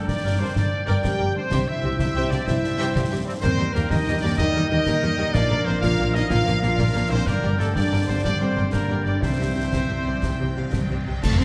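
A full orchestra opens together at once: a dark, woody violin section carries the soaring melody over lush bowed strings, with a rich cello section and a dark, close double bass section anchoring the bass, a warm viola section in the background, and a second violin section playing a second line alongside the clear oboe, airy flute and clarinet. Dark French horns and distant trombones hold sustained chords, bright trumpets punch out tight stabs, a ringing harp spins arpeggios, and snare, bass drum and bright clash cymbals drive the 12/8 pulse at 125 BPM through a Gm, C, Eb, Bb progression. Round timpani strikes land at 5.3 seconds, a cymbal swell with dark cymbals and bass drum rises from 7.3 seconds, and the whole band hits an accent at 11.2 seconds in this heroic, adventurous film-score cue, set in a moderate scoring-stage reverb.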